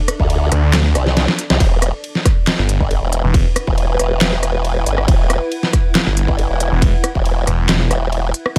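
A cloudy, blurred granular pad in the background opens this menacing, chaotic heavy wobble dubstep excerpt at 0.0 seconds. The pad is bright and evolving, with its own reverb and a sidechain pumping. A dubstep drum kit and a punchy, up-front electronic kick arrive almost at once, setting a half-time feel at 138 BPM in E minor. The kit has a deep snare, crisp hats, handclaps, ride cymbal and rim clicks, all tape-warm and layered, and a drum fill lands at 1.2 seconds. A formant-sweep wobble bass churns with chorus and overdrive, joined by a snarling, growling sawtooth bass that drops out and returns at 6.1 seconds. The harmony moves from D5 to E minor, and the mix is dry and loud, with both basses pushed to the front.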